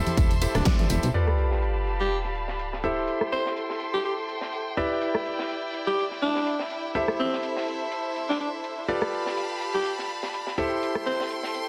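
A growling alto saxophone leads this euphoric, uplifting piano house excerpt, its raspy, gritty tone carrying vibrato and scooped notes over a smooth top, with digital delay trailing its jazz-style solo from 0.6 seconds. At 124 BPM in 4/4 with a light 16th-note swing in C major, a bright concert grand piano plays a brilliant, intimate riff up front, its action noise audible and its long sustain touched by sidechain pumping, a low-pass filter and digital delay. A clear chamber violin section holds intense, bowed sustained chords with vibrato, pumping under sidechain and treated to a filter sweep from 1.1 seconds. The opening bar sets a punchy, round FM bass, an overdriven electronic kick and ringing tambourine and congas in the background. The kick drops out at 0.8 seconds, and the bass and percussion stop at 1.1 seconds, when an up-front sub drop lands as an impact. A dry, overdriven analog drum machine with a punchy snare drives the groove, layered with a deep reggae drum kit with a high-tuned snare set back in the mix, while chords move through G9, Am7 and Em7 inside a dense, heavily limited modern master with moderate plate reverb.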